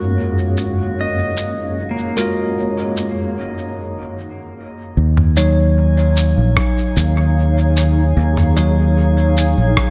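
A straight 4/4 pulse at 75 BPM carries this deep, hazy ambient dub excerpt in Eb minor, where a muffled, pitched-down lo-fi sampler kit of rim click, shaker and toms with dub echo sits beneath a dark, cloudy granular pad, bright bell-like tine electric piano stabs with dub echo and a faint glassy harmonics texture, while a pedal steel guitar adds slide arpeggios with tape echo early on, a round fingered electric bass comes up front at 5.0 seconds as the chords move from Gbmaj9 to Ebm7, and a deep analog electronic kick joins at 6.6 seconds.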